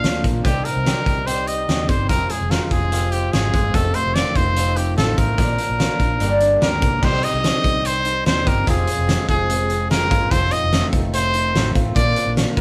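A bright, punchy trumpet carries the melody up front from the very start of this jangly indie pop excerpt, with the full band playing together in one room at a brisk 146 BPM in a straight 4/4. The mood is bittersweet and wistful, moving through a minor-leaning progression of Cm, Fm, F7 and Bb, with a turn to Gm before the phrase begins again at 7.0 seconds. A picked twelve-string acoustic guitar sits in the background with a boxy, shimmering, octave-doubled tone, while a clean, direct-recorded electric guitar plays compressed arpeggios bathed in spring reverb. Underneath, a vintage fingered electric bass gives a dark, round, foam-muted low end. The loose indie drum kit is close and gritty, with a fat snare, a punchy kick and dark cymbals, all saturated and rolled off at the top, inside a moderate studio ambience.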